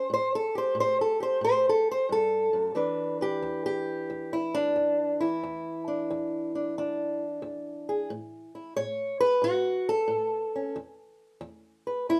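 Gritty and swaggering, this short cut from a longer acoustic country blues piece rolls along in a swung 4/4 feel. A lone fingerpicked, ladder-braced acoustic guitar carries the whole passage up front, its dark, boxy, woody tone coloured by old strings as it moves through A7 and E7 voicings before settling on A and ending on an E5 at 10.8 seconds. A wet studio reverb gives the instrument a sense of room around it.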